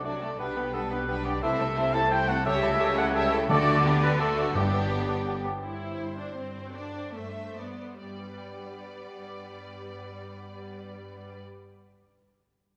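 Classical orchestral music in 3/4 and G major, dramatic and urgent, moving at a tempo between 128 and 176 BPM before slowing down from 5.1 to 8.0 seconds. A rich, distant violin section carries the melody with smooth vibrato, while a lush second violin section in the background adds a second line alongside a bright, airy flute ensemble, a mellow clarinet and a mellow cor anglais with a smooth top. A lush viola section, a very quiet warm bassoon and a ringing, fingerpicked concert harp playing arpeggios fill out the accompaniment, as a dark, roomy French horn section holds sustained chords and a dark trumpet section with a soft attack adds stabs. An intense, clear cello section and a distant double bass section anchor the bass, and close, dry timpani enter briefly at 3.5 seconds. The winds, brass and double basses fall away around 5.5 seconds, leaving strings and harp to carry the rest of this fragment of a longer piece, with the harp ringing on until 11.9 seconds. 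A wet concert hall reverb surrounds the ensemble, and the harmony moves from G/B through A7/C# and D before settling back on G.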